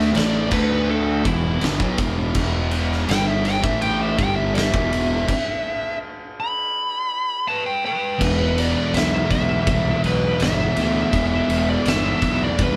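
A straight 4/4 pulse at 82 BPM drives this hypnotic, sludgy stoner and doom metal passage in E minor, cut from a longer piece. An oversized, low-tuned acoustic drum kit sits up front in a bright stone room that pumps, with a punchy kick, a fat snare and dark crash and ride cymbals, all saturated and gritty. Beneath it, a thick, double-tracked fuzz guitar picks a dark, distorted riff. A fingered electric bass adds a bright, growly overdriven fuzz in the low register. Over the top, a compressed fuzz lead guitar plays a warm, up-front solo that moves through Asus4, D5 and Em. The band hits a stop at 5.3 seconds that holds until 8.2 seconds, when the music returns on an E5 power chord. The whole band plays live in one room with light reverb.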